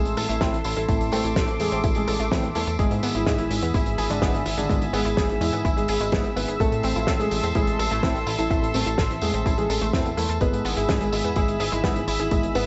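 A dark, mellow grand piano with digital delay carries a melodramatic, danceable italo disco melody at 126 BPM in A harmonic minor, over a thick, warbling chorused unison pad, a detuned sawtooth pluck playing arpeggios in the background, clean tine electric piano stabs, a glossy pulse-wave synth bass, a punchy layered electronic kick entering at 0.4 seconds and a dry, damped 70s kit with fat snare, hi-hat, tambourine and gated reverb, all cycling between Am and E/G# in this brief cut from a longer piece.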